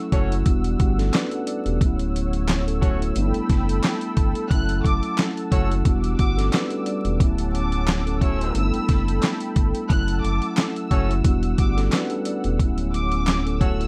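A gritty, thumpy sampler-style drum kit with fat snare, handclaps and hi-hat drives this nostalgic, confident boom-bap hip-hop excerpt. It sits over a deep sine-toned sub bass, a mellow tape-coloured tine electric piano, a dark detuned analog pad with chorus, distant roomy horn stabs with slapback echo and a very quiet dry finger snap, and a lush bowed violin section enters at 4.5 seconds with a vibrato melody, all under light reverb and vinyl crackle.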